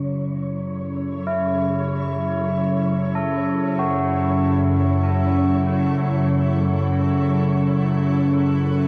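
An analog drone sits up front from the very start, its detuned sawtooth and pulse-wave tones warbling through chorus with a vintage, wave-folded character in the low register. Around it, a granular cloud pad fades in on sustained F# minor chords, cloudy and blurred, its shimmer reverb giving it a full-bodied haze. A breathy, wind-like noise texture tuned to a single high note hovers in the background, growing fainter as it fades out over the course of this excerpt. At 1.3 seconds, soft tubular bells enter with mellow, padded-hammer arpeggios, their metallic ringing stretched by tape echo and shimmer. The result is a desolate, unsettling dark ambient drone in free time, steeped in a long plate reverb and an echo-heavy mix.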